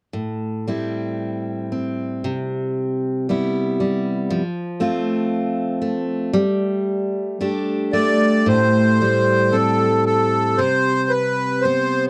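Mournful and haunting, this rubato Celtic folk fragment, cut from a longer piece, opens with a picked dreadnought steel-string acoustic guitar with warm fresh strings laying down an up-front accompaniment over Am7, Cmaj7, F and Gsus2, until a full, reedy accordion with slow beating enters at 7.9 seconds to carry the melody in a dry, close-miked 1970s-style studio sound.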